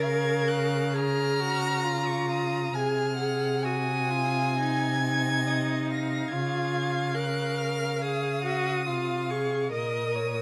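A moderate recital-hall reverb surrounds this serene, tender slow romantic movement for string quartet, cut from a longer piece and played with rubato in 4/4. The first violin sings the high melody with vibrato and expressive portamento from a slight distance, while the second violin holds a smooth, even line close by beneath it. The viola's focused accompaniment and the cello's vibrato-laden bass, set up front, give the whole quartet a rich lower foundation.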